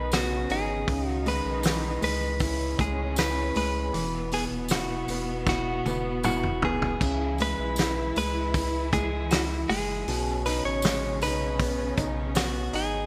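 A clean, compressed electric guitar carries the melody of this heartbroken pop ballad from the first moment, over a felt-muted upright piano with audible action noise, a round sine sub bass, and a bowed cello section with vibrato and delay set lush in the background. A loose indie drum kit with a fat snare, tight kick and gated reverb stands up front beside a jingly tambourine further back, with a drum fill between 5.5 and 7.0 seconds. The bright 1980s-style digital production is bathed in hall reverb, giving the emotional mood a spacious sheen.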